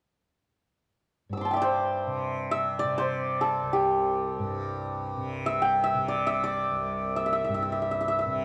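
In free time, this meditative, radiant fragment of Indian classical music in raga Bhupali on C sets an up-front, hammered santur melody, ringing and shimmering between G4 and E6, over a quieter, softly plucked, buzzing tanpura drone spanning C2 to C3, both sounding from 1.3 to 8.4 seconds in a dark, warm production with moderate recital-hall reverb.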